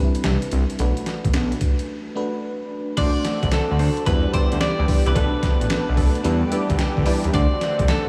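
Swung sixteenths at 110 BPM drive this bouncy, punchy new jack swing passage in E minor, built on a gritty, pitched-down boom bap kit with a thumpy kick and a fat, detuned sawtooth bass sitting up front beneath a glassy, bell-like FM electric piano with chorus. After a break at 1.9 seconds, the section at 3.0 seconds brings in a slightly broken-up, picked electric guitar melody with tape echo, a swirling phased pad and dark, funky polysynth stabs in the background, moving through D7, Em7 and Bm7 chords. Light studio reverb surrounds the mix.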